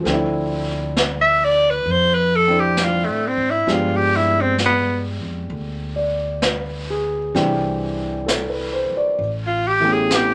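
A slow swung 4/4 at 66 BPM sets this intimate, romantic jazz ballad in motion, with a brushed drum kit on snare and hi-hat and a woody pizzicato upright bass underpinning a warm grand piano whose action noise is audible as it comps through Dm9, G7b9, Cadd9 and A7. At 1.2 s a bright, punchy alto saxophone enters up front for its solo, playing forcefully with vibrato and scooped notes. The drums sit mid-forward with a rolled-off top, and the whole passage, cut from a longer piece, sits in a moderate studio ambience.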